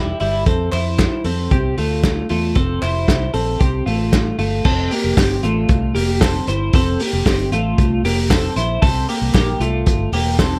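Jangly indie pop at 115 BPM in F major, this short excerpt cut from a longer piece feels nostalgic and bright, sitting in a dark, warm production with a small room's moderate reverb. A twelve-string electric guitar plays arpeggios from the very start, its clean, picked, twangy tone kept up front and given a subtle chorus. Beneath it, a vintage muted fingered electric bass holds the low end with a round, foam-muted sound. A vintage drum kit comes in at 0.2 seconds, lo-fi and muffled, with a punchy kick, a medium-tuned snare, hi-hat and dark crash cymbals. Group handclaps join at 0.7 seconds, crisp and saturated but set in the background. The harmony opens on Fadd9 and turns to C7sus4 at 8.8 seconds as the passage moves through its second section.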